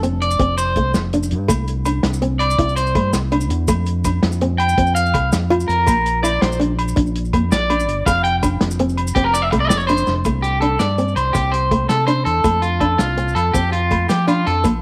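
Carefree and sunny, this highlife guitar-band piece in 12/8 puts twangy, slightly broken-up electric guitar arpeggios with slapback echo up front over a round, punchy fingered bass, a dry, mid-forward soul drum kit, grainy maracas, a small fingerpicked nylon-string guitar and ringing agogo bells that enter at 1.5 seconds, while a clean electric guitar solo runs until 10.3 seconds and a drum fill at 10.1 seconds leads into the closing section, set within a small room's light reverb.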